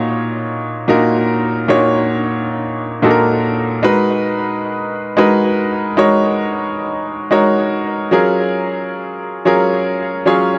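Amapiano excerpt at 112 BPM in G# dorian with a late-night, soulful mood, where a clear, up-front baby grand piano plays alone from 0.0 to 10.6 seconds through D#m9/A#, G#m7 and F#maj7 chords, its notes trailing into dub echo within a small room's light reverb and an echo-heavy mix.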